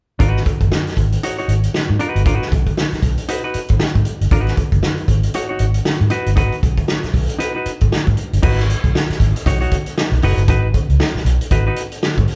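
A loosely swung sixteenth-note funk groove at 117 BPM in 4/4 sets a hypnotic, cool mood in G# minor, resting on a single G#m7 chord in this short cut from a longer piece. A vintage acoustic drum kit sits up front with a punchy kick, medium-tuned snare, hi-hat, crash and a rolled-off top, while a dark, round, foam-muted fingered bass anchors the low end. A clean, compressed semi-hollow guitar adds quieter hollow-body accompaniment until 11.8 seconds, with the whole band captured live in one large studio with moderate reverb.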